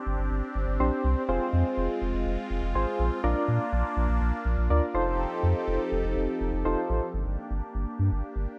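Bathed in light reverb, this cool, nocturnal pop excerpt at 123 BPM sets soft, mellow electric-piano-like synth keys with chorus and tremolo over a swirling, detuned phased analog pad and a deep, dark round analog bass, moving through Gsus4, Fm, Bb and F7 before the keys stop at 7.1 s as the harmony shifts to Gm.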